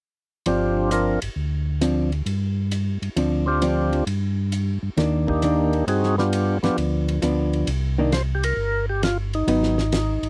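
A percussive tonewheel organ with key click and a slow rotary speaker carries the melody in this soulful, smoky, swung soul jazz organ trio excerpt, backed by dark, compressed hollow-body guitar accompaniment that drops out at 9.8 seconds, a round, lightly overdriven organ bass with chorus vibrato, and a fat-snared soul drum kit with a rolled-off top, all in a dry, close 1970s-style studio sound.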